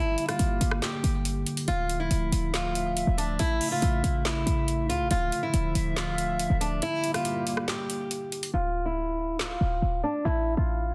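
Light reverb and digital ambience surround a dense, heavily limited modern master in this melancholic, hard-hitting trap cut at 140 BPM in 4/4 with a half-time feel, set in D harmonic minor. Up front, a bright, fingerpicked flamenco guitar with fresh strings carries the melody through a low-pass filter and digital delay, while a punchy, tight 808-style bass with a sine body, noise layer and fast, decaying attack anchors the low end. A deep, moody analog pad of detuned square, sawtooth and triangle waves with a sub octave and wave-folding holds slow-attack chords under lush chorus, moving through Gm, Dmadd9 and A. The electronic trap kit brings a woody snare, metallic hats, handclaps and rim clicks, dropping into a break at 6.8 seconds. At 8.5 seconds the pad stops, the hi-hats fall silent and a filter sweep washes over the guitar as the harmony settles on Dmadd9 and then A5 in this cut from a longer piece.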